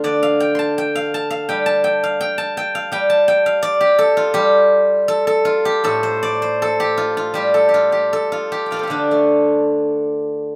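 Elegant and contemplative, this brief passage of Chinese traditional music, cut from a longer piece, features a single steel-string zither playing solo in D yu mode. The tempo moves freely in rubato, hovering between 63 and 86 BPM within a 4/4 frame. Played with fingerpicks, the acoustic zither sits up front with a bright, silvery, ringing tone, ranging from A2 up to C6. A light reverb gives the instrument a gentle sense of space. The whole fragment lasts about 10.6 seconds, unfolding as one continuous section of unaccompanied plucked strings.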